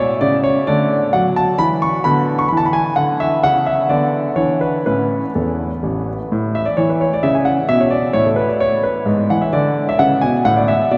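Set in 3/4 at 130 BPM, the rhythm moves with a rubato feel that gives this classical-period piano sonatina a cheerful, playful spring. A solo grand piano carries the whole excerpt from start to finish, its warm, smooth, vintage tone placed up front and ranging from A1 up to C#6. The music sits in A major, tuned to A4 = 438 Hz, moving from A through D and E5/D before a brief chordless moment at 3.4 seconds, then on through Bm/D and E5 back home to A. The opening section returns at 6.3 seconds, now colored by Aadd9 and E7/G# before settling on A5. A wet cathedral reverb with a long 6.5-second decay surrounds the piano, giving the room a spacious, ringing glow.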